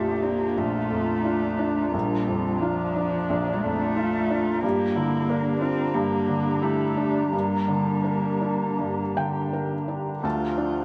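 Neoclassical piano and strings in a melancholic, fragile mood, moving with a rubato feel in 4/4 at roughly 78-92 BPM. A felt-muted upright piano sits up front, soft and intimate with a thin felt tone, and carries the accompaniment across a broad range from low bass to high treble. A single bowed cello plays the second line, dark and close with vibrato and a soft attack, its sul tasto tone giving it a smooth top. Beside it, one bowed viola adds accompaniment with a woody, nasal colour, also played sul tasto with vibrato. From 0.1 seconds a warbling, tape-like pad holds sustained chords with a nostalgic, lo-fi character, its detuned chorus and built-in reverb lending a vintage haze. The harmony moves from Bbmaj7 to Gm at 4.6 seconds and reaches Dm at 10.2 seconds, all set in a moderate echo chamber reverb, and this short excerpt is cut from a longer piece.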